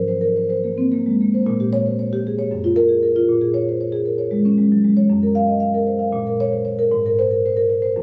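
A solo marimba played with soft mallets opens this short contemporary classical excerpt, sitting up front with a mellow, round tone. The mood is reflective and flowing, with a rubato feel stretched over a 7/8 metre. The instrument ranges from a deep Gb2 up to F5, moving through harmonies such as Abadd9, Bbm6, Gbmaj7 and Bbm7 before returning to Abadd9 near 6.9 seconds. The sound has the intimacy of a phone recording made in the room, with a light club-style reverb and some compression around the marimba. The passage is cut from a longer piece and lasts about 8.0 seconds.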